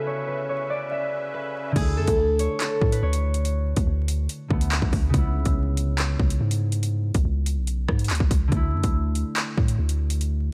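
Hip hop in a drill style, this cold, ominous excerpt from a longer piece moves in a half-time feel over a bed of vinyl crackle. It opens with an up-front, fingerpicked concert harp melody, acoustic and ringing and softened by a low-pass filter with digital delay, over a second, mellow harp playing filtered accompaniment, while a reedy, shimmering musette accordion holds brief filtered chords. At 1.8 seconds a drill drum kit arrives up front, overdriven and electronic, with a hard-clipped kick, metallic hi-hats, handclaps, rim clicks and crash cymbal. A deep, long, sine-toned 808-style bass enters at the same moment, with a fast attack that decays. The harp melody stops at 5.0 seconds, leaving the harp accompaniment, bass and drums to carry the C#m7 and Dsus2 harmony to the close.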